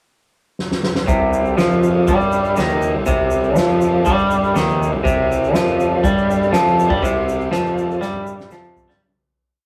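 A straight 4/4 psychedelic rock groove sets a hypnotic, trippy mood in this short, complete piece. The soft-mallet drum kit enters at 0.6 seconds with a fill out of the pickup bar, its boomy kick, fat snare, toms and ride cymbal all struck with soft mallets for a big rock groove. At 1.1 seconds the band settles onto C: a twangy, scooped electric guitar plays a clean, picked single-note riff up front, doubled by a round, punchy fuzz bass that adds a dotted figure through its overdrive. A vintage, reedy combo organ holds very quiet sustained chords beneath, while a grainy egg shaker ticks close and dry in the background. The rough rehearsal-room recording carries a modest small-room reverb and saturated warmth, and the drums play another fill as the music fades out over its final two seconds, ending at 9.0 seconds.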